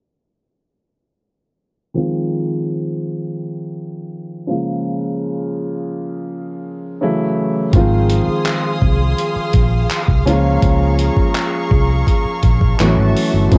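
This excerpt has a muffled home-cassette sound, softened by a low-pass filter and carrying little reverb, and it comes from a longer contemporary R&B piece with a tender, smooth mood in a straight 4/4 feel. A warm concert grand piano with a deep bass register opens alone at 1.9 seconds, sitting up front with tape coloring, while a filter sweep runs through the opening stretch. At 7.7 seconds the rest of the band arrives, led by a gritty, compressed sampler-style soul drum kit with a thumpy kick, hi-hat and handclaps, re-recorded in a large room yet kept prominent in the mix. Beneath it, a foam-muted fingered electric bass gives a round, amped low end. A dark studio string section adds intimate, close sustained chords, bowed sul tasto with light vibrato and a soft attack, as the harmony cycles through Ab6, Db6 and A6 in both halves.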